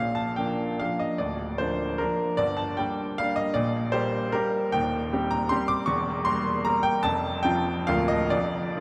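This is a romantic classical triple-time dance in 3/4 and Bb major, cut from a longer piece, with a nostalgic, capricious mood, dotted rhythms and a rubato feel that drifts between 123 and 165 BPM. A solo grand piano plays across the full 8.8 seconds, spanning D1 to D6, with a brilliant, up-front tone, long sustain and audible action noise that lends an intimate closeness. The harmony moves from Bb through Gm and Cm/Eb to an Edim7 and F before settling on Bb/D, all bathed in the 5.9-second cathedral reverb of a vast, echoing space.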